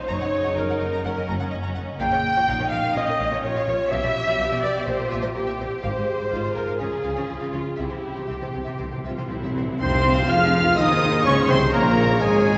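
A dark, distant clarinet, lush bowed violins, a rich viola section and ringing harp arpeggios open this urgent, dramatic romantic orchestral passage in a rubato 4/4, joined by an intense cello section and a bowed double bass section; a close, dry cymbal swell and tam-tam enter at 5.8 seconds, hard-mallet timpani fill from 7.8 seconds, and at 9.8 seconds the full band accents as airy flutes, a vintage-toned oboe, bassoon, mellow horns, soft trombones, bright trumpet stabs and a tuba join, all bathed in a wet church reverb.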